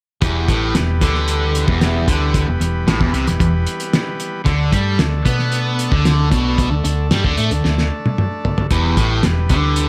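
This short cut from a longer psychedelic rock piece has a light studio reverb, and its mood is trippy and dark. Up front, a cloth-damped drum kit thuds in a small, lo-fi room with a fat snare, tight kick, hi-hat and toms, its gritty, muffled tone rolled off at the top. A double-tracked fuzz guitar carries the riff, bright and compressed, with distortion and a phaser. Beneath it, a hollow-body short-scale electric bass played with the fingers gives a round, dark, amped low end. A buzzy vintage combo organ holds sustained chords further back, with spring reverb. The harmony moves from E minor to D5 at 4.5 seconds and returns to E minor at 8.7 seconds, just after a drum fill that starts at 7.6 seconds.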